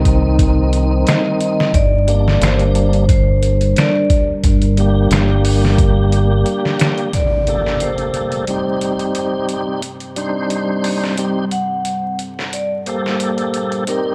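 A round, dark dub electric bass sits up front until 6.4 s in this smoky, hypnotic trip hop cut in G minor at 89 BPM, alongside gritty, pitched-down sampler drums with a thumpy kick, a clicking tonewheel organ through fast rotary speaker and tape echo, a detuned sawtooth pad that takes on a filter sweep from 7.1 s as an electronic impact hits, and a bright, ringing hard-mallet vibraphone melody with tape echo, all under a layer of vinyl crackle and light reverb.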